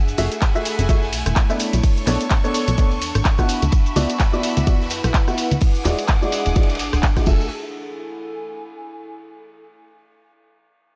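This piano house excerpt moves at 127 BPM in 4/4 with a swung sixteenth feel, sounding soulful and energetic as it cycles through F#m9, Bm9, D69 and E9 chords before settling on Eadd11 at 7.5 seconds. A punchy electronic kick sits up front, layered with a house drum kit of crisp hats, handclaps, rim clicks, shaker and crash, while a raw garage kit of hi-hat, ride and snare and a small-room tambourine murmur in the background. A plucky analog bass with a funky, fast-attack sawtooth bite pumps against the kick, and its filter sweeps through the first 7.5 seconds. A brilliant, woody upright piano carries the riff with short sustain, delay and its own filter sweep, while a bright violin section holds focused, vibrato-rich chords. Alongside them a warbly, lo-fi pad with chorus and reverb adds nostalgic haze and is the only part that carries on alone to 9.4 seconds.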